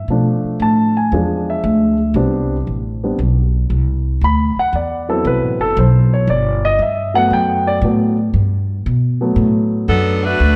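A grand piano takes the spotlight from the start, playing solo and up front over a Bm7b5, E7b9, Am11, D13 to Gmaj9 progression in G major. It is a swinging, brassy big band jazz fragment at 116 BPM in 4/4. A woody, thumpy pizzicato upright bass with gut strings anchors the low end throughout, and a clear, present saxophone section with vibrato arrives at 9.9 seconds to open the melody, all set in a dark, warm production with a moderate scoring-stage reverb.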